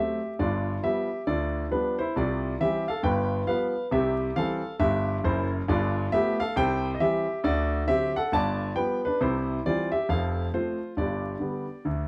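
Swinging and exuberant, this short stride piano excerpt cut from a longer jazz piece bounces along in 4/4 with a gentle swing on the eighth notes. A lone grand piano carries everything from 0.0 to 12.1 seconds, spanning from F1 up to A5, its tone smooth and vintage and set up front in the mix. The harmony circles between dominant and tonic, moving through G7, C, G9 and D7 before closing the passage on F and then G. The room is a studio with a short, wet reverb, and the piano is heard from further back in that space. A layer of vinyl crackle gives the recording an aged, old-record character.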